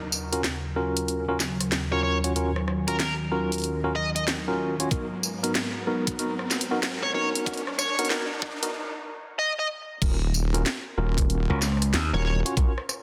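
This gritty, funky glitch hop opens at 94 BPM in Eb minor with a smooth, detuned sawtooth pad holding chords under a background riser. It is soon joined by a drum kit with a cracking snare and bright hats, clean tremolo electric piano stabs with sampler grit, sidechain pumping and dub echo, and a picked, overdriven lead guitar melody through a low-pass filter. A knocking electronic kick enters at 4.9 seconds as the build-up moves from Ebm7 to Abm9, and after a short break the drop lands at 10.0 seconds with a heavy, saturated wobble bass and a brief burst of punchy slap bass, all in a swung, dense, heavily limited mix with light reverb.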